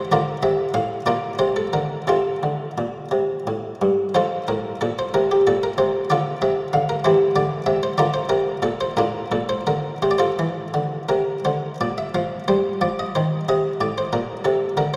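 Set in a lilting compound metre counted in six, this classical, baroque-style suite movement moves with a flexible, rubato pulse that gives it a radiant, dance-like character. A single buff-stop harpsichord plays alone throughout, and its airy, muted, lute-like pluck in the Italian manner sounds dry and up front, spanning from low bass notes up into a bright upper register. Around it, a church reverb with a long tail adds a resonant halo to the room. The harmony moves gracefully through chords such as Bb, F/C, Dm and C, and colours the phrase ending near 11.1 seconds with a Bbmaj9#11. At 12.2 seconds a new section begins over an open F7 sonority and settles back onto Bb, where this fragment, cut from a longer piece, breaks off at 15.0 seconds.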